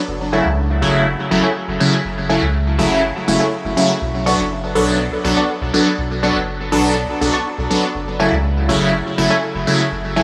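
A steady, straight 4/4 pulse at 122 BPM carries this meditative, nocturnal dub techno excerpt in F# minor, cut from a longer piece and moving from F#m7 to Bm7 at 4.0 seconds and back to F#m7 at 8.0 seconds. A pure sine sub bass enters at 0.1 seconds, deep, clean and dark, holding sustained notes between F#1 and C#2. Up front sits a juicy, detuned sawtooth polysynth playing stabs in the middle register, its bright, resonant filter sweeps colored by chorus, phaser and dub echo. Tucked in the background, a muted dub chord stab of detuned sawtooth and triangle tones gives short filter plucks higher up, softened by chorus and trailed by dub echo. The dry, gritty hardware sound is set in a lush hall reverb with a 2.7-second tail, giving the sparse parts a deep, shadowy space.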